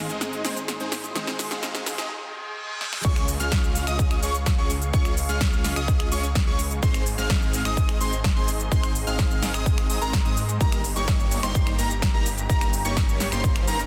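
A straight 4/4 pulse at 127 BPM drives this triumphant, uplifting festival progressive house excerpt in Ab major, tuned to A4 = 445 Hz. It opens on a build-up: a fingerpicked, full-bodied steel-string acoustic guitar sits in the background until 2.0 seconds, while a big-room dance drum kit with a punchy snare, crisp hats, finger snaps, shaker and crash rolls through a fill, and a very quiet riser and reverse cymbal lead the ear toward the drop at 3.0 seconds. Throughout, a lush unison pad with a slow attack, chorus and phaser holds bright sustained chords behind huge, detuned supersaw chords that carry the riff, all over a thick, saturated detuned saw bass, with sidechain pumping on these synth parts. At the drop an overdriven, up-front electronic kick enters and a plucky, catchy unison lead spins high arpeggios through lush chorus and digital delay. The harmony moves from Ab to Db, back to Ab and on to Eb/G, and the dense, heavily limited master adds a touch of light reverb.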